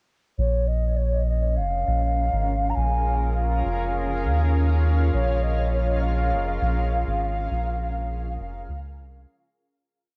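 A hazy, deep cassette home recording with light reverb frames this ambient dub piece, where a round, soft sub bass sits up front with long gliding notes beneath a cloudy, blurred granular pad that enters at 1.4 seconds with slowly shifting chords, while a distant, hollow wooden flute with vibrato plays call phrases through tape and dub echo into the fade-out from 6.7 seconds.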